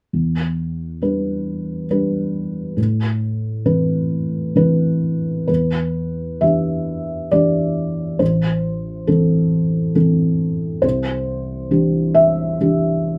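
Neoclassical minimalist piano in E minor, this short passage cut from a longer piece moves at a slow 68 BPM in 3/4 with a rubato feel that gives it a melancholic, reflective mood. A single felt-muted upright piano plays alone throughout, spanning A1 to E5. Its thick felt gives a dark, mellow tone, and the audible action noise keeps the sound intimate and up front. The harmony moves from Em7 to Amadd9, then returns to Em7 at 5.5 seconds before passing through Am and settling on Cadd9 at 10.8 seconds. A light reverb surrounds the instrument.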